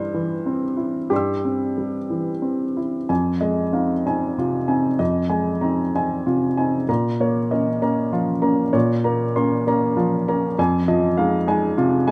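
A warm upright piano opens alone on a C/G chord, setting a melancholic, wistful tone in this short neoclassical minimalist excerpt in F minor. The pace is unhurried and rubato, moving at roughly 59-67 BPM in 6/8 counted in dotted quarters, with the instrument tuned to A4 = 444 Hz. The piano sits up front with an intimate, woody character, and the audible action noise of its mechanism adds a natural, close-up texture. Its range stretches from F2 to E6, framed by a light reverb. After the brief opening section, a second passage begins at 3.1 seconds on Fm7, moves to Bbm at 6.9 seconds, and returns to Fm7 at 10.6 seconds before the cut at 12.1 seconds.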